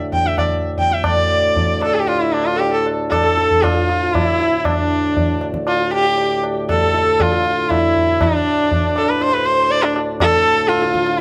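A light reverb surrounds this introspective, meditative Hindustani excerpt in raga Bhimpalasi on D, set in 7/4 at 118 BPM and gradually speeding up, with tuning at A4 = 443 Hz. A reedy, breathing hand-pumped harmonium holds a low, dark drone from the start, while an up-front sarangi carries the melody with a nasal, boxy tone, gliding portamento, light vibrato and the shimmer of sympathetic strings. High-tuned, ringing tabla joins almost at once, and a second, very quiet sarangi adds a smooth, even second line in the same range.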